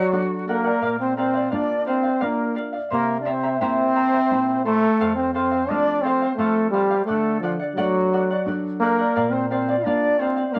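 A close-miked trombone carries the melody up front in a warm, classical style, leading this wistful, earthy Andean folk excerpt at 86 BPM in a straight 3/4. Behind it, a distant, breathy large quena with a reedy chiff and vibrato plays a second line, while a mellow, fingerpicked charango adds shimmer from its double strings. A full-bodied nylon-string guitar, thumb-plucked with the odd finger squeak, enters at 0.1 seconds, all set in a moderate studio reverb under a layer of vinyl crackle as the chords move from D through Bb, C7 and F.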